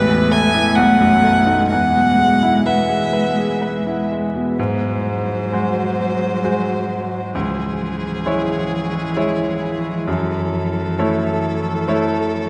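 Classical, a lyrical and serene slow romantic movement for piano trio in 3/4 with an uneven, rubato pulse, where a focused violin sings the melody up front with vibrato, a rich cello adds a soft-attacked, expressive second line with vibrato and portamento, and a brilliant grand piano with long sustain and audible action noise carries the accompaniment, the passage shifting into a new section at 4.6 seconds with chords moving from A5 and B7 toward C#m and F#m7, all ringing out in a vast, echoing cathedral.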